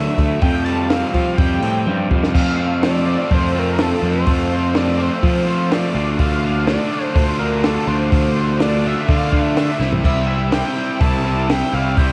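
A straight 4/4 beat on a compact cocktail kit, punchy of kick and high-tuned of snare with a dark, rolled-off top and a cassette tint, drives this moody, restless indie rock clip, cut from a longer piece, entering at 0.2 seconds and rolling a fill into the shift to F at 2.3 seconds. Up front, a fuzzed, picked electric bass plays under two overdriven guitar riffs, one crunchy and the other biting and set back in the mix with a subtle chorus, as the chords move through Dm to C, where another fill lands at 9.8 seconds. Over the top, a screaming, guitar-like synth lead of detuned sawtooth and pulse waves carries the melody with vibrato, its distortion and tape grit sitting in a light studio reverb on a lo-fi home cassette recording.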